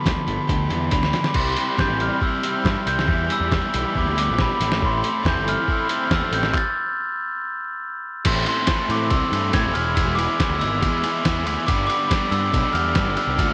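Indie rock in A minor at 140 BPM, restless and cool, this excerpt sets a mellow, bell-like glockenspiel melody up front over two overdriven guitar riffs in the background, one crunchy and the other bright with analog chorus, while a fuzz-driven, punchy bass and a muffled, pitched-down sampler-style drum kit with a thumpy kick and handclaps drive beneath. A drum fill at 0.9 seconds leads into the next section, where a buzzy vintage combo organ enters barely audible with light vibrato, and a stop from 6.5 to 8.3 seconds breaks the groove before the band returns. The drums are tape-warm and compressed, and the mix carries light reverb and digital ambience, with nothing above 10.4 kHz.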